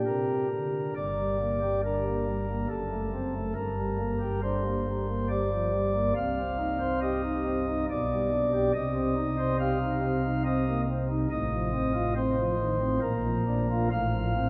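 Soft, romantic flute stops on a solo pipe organ open this serene, majestic chorale-style classical piece in G minor, unfolding in a rubato 3/4 at 70 BPM across a range spanning deep bass notes to the treble, its up-front voicing moving through chords such as Gm, Cm and F7/A before the 14.5-second excerpt breaks off, all bathed in a long, wet cathedral reverb.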